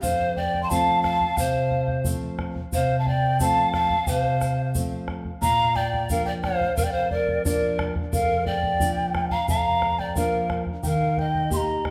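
Andean folk for an Andean ensemble, this short excerpt cut from a longer piece feels festive yet wistful, moving in a straight 4/4 over chords of F, Bb and Eb. A large wooden quena carries the melody up front, its hollow, mellow tone marked by vibrato, a crisp chiff on each attack and a tape echo trailing behind. Beneath it a bamboo pan flute plays a second line, breathy and reedy with tongued notes and its own vibrato. A fingerpicked nylon-string guitar supplies bright classical accompaniment close to the listener, while a round, dry bombo and a grainy, saturated tube shaker keep the percussion going. The players sound as if gathered live in one large studio, wrapped in a wet reverb that lingers about 1.1 seconds.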